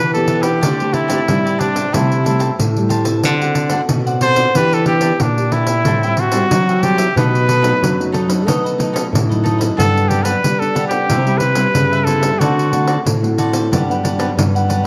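This samba and choro piece moves at 92 BPM in a straight 4/4, carrying a mood that is both nostalgic and lively. A clear, up-front trumpet takes the solo melody in a jazz style with vibrato, ranging from D4 to C5 and stopping at 13.1 seconds while the rest of the band plays on to the end at 14.9 seconds. Beneath it, one thumb-plucked classical nylon-string guitar holds the bass line between G2 and B3 in the background, while a second thumb-plucked classical nylon-string guitar, with audible finger squeak, plays accompaniment from F#2 to A4. A jingly pandeiro played with soft hands joins at 0.1 seconds, and a crisp, picked cavaquinho enters at 0.3 seconds, sitting high in the texture. The harmony circles from Em7 through D7, Am7 and B7 to Gmaj7, Cmaj7 and back to Gmaj7, all set in a small room with a moderate echo-chamber reverb, and the clip is cut from a longer piece.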